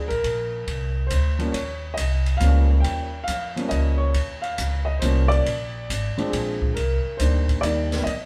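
Relaxed and swinging, this short jazz piano trio excerpt in waltz time sets a warm baby grand piano up front on the melody over a woody, thumpy upright bass with gut strings and an open acoustic drum kit whose dark cymbals, high-tuned snare and boomy kick sit back in a live room with a wet studio reverb, the harmony moving through Bbadd9, Eb9, Bb9 and Cm7.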